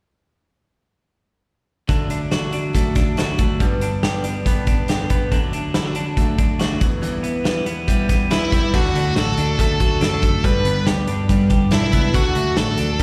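A bright, twangy twelve-string electric guitar rings out up front with compressed arpeggios, bathed in spring and plate reverb with slapback echo. It opens this jangly indie pop fragment in D major at 140 BPM alongside a modern studio drum kit with a punchy kick and a softer picked steel-string acoustic guitar in the background, whose finger squeaks come through. At 8.3 seconds a bluesy, distorted lead guitar with tube saturation takes up the melody, and a dark, round, foam-muted electric bass arrives at 8.7 seconds, all carried through a live venue's PA and the light reverb of a recital hall for a bright, youthful mood.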